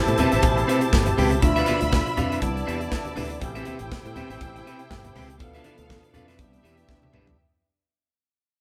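A lush, bowed symphonic string section sits up front with smooth, even vibrato, carrying a second line over this sultry, glamorous disco groove at 121 BPM in 4/4, with a light 16th-note swing. Beneath it, a full tonewheel organ with gentle overdrive and vibrato holds sustained chords, while a twangy, picked electric guitar at the edge of break-up adds accompaniment. A punchy, direct fingered electric bass anchors the low end. A polished acoustic drum kit, with a tight kick and medium-tuned snare, drives the groove alongside very quiet, low-tuned congas with a bright, thin-skinned tone. The chords move through Am9, Dm69 and Cmaj9. The band plays live together in a moderate stone room, and this cut from a longer piece fades out across its whole length, with a drum fill arriving from 6.9 to 7.4 seconds.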